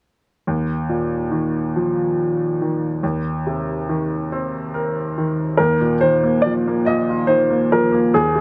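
In a slow, straight 6/8 at 47 BPM (dotted quarters), this romantic, heartfelt pop fragment opens with a bright, woody upright piano laying out long-sustaining accompaniment over Ebsus2 and Cm7/Eb, with the piano tuned to A4 = 444 Hz, adding a fill at 4.3 seconds before a warm grand piano enters up front at 5.6 seconds with a short-sustained, delay-touched melody, all set in light reverb within a dark, warm production.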